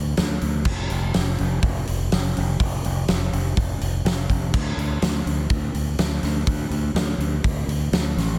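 A growling, bright fingered electric bass with overdrive sits up front between F1 and D2 as a huge acoustic arena drum kit, with a fat snare, punchy kick, hi-hat and crash cymbal, joins it up front at 0.2 seconds, driving this hazy, dreamy shoegaze and dream pop rock fragment in D minor at a straight 124 BPM through a dry, dense, heavily limited modern master.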